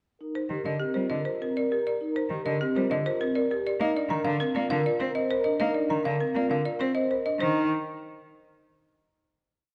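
A dry, woody folk marimba struck with hard mallets carries the up-front melody in this short, urgent and hypnotic minimalist classical piece in 3/4, its repeated cell sounding alongside ringing soft-mallet vibraphone arpeggios with a slow motor vibrato, a rich, focused cello accompaniment bowed by one player, and a mellow background French horn on Bb4 whose pulsing notes swell and fade, the recording set in a moderate stage reverb and worn, warbling cassette tape until a final chord at 7.4 seconds.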